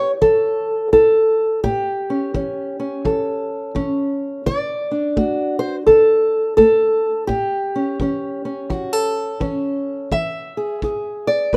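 A fingerpicked old ladder-braced acoustic guitar opens the recording, carrying the melody in a swaggering, rollicking acoustic country blues with a swung feel. Its tone is dark and woody, with the character of old strings, and it sits up front in the mix, ranging from A2 to E5. A kick drum joins at 0.2 seconds, sitting distant and roomy well beneath the guitar, its tight, rolled-off sound touched with brushes. The harmony moves from A7 to D at 4.5 seconds, returns to A7, and reaches E7 at 10.1 seconds. Light reverb and small room ambience give the piece the rough feel of a home demo, and this brief stretch is cut from a longer performance.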